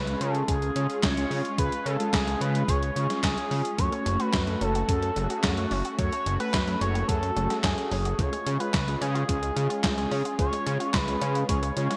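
Bright 1980s-style digital production in a spacious hall reverb frames this driving, nocturnal synthwave passage at 109 BPM, where a smooth, nasal synth lead with vibrato, chorus and digital delay sings the melody over a fat, saturated sawtooth bass and an airy unison pad that both pump to the sidechain, while dark, brassy synth stabs sit in the background, a thumpy, tape-toned electronic kick and a gated 80s drum machine with handclaps, hi-hat and a gated-reverb snare drive the beat, and a very quiet, round analog pluck adds arpeggios from 3.8 seconds as the harmony moves from C# to F#m and back to C#.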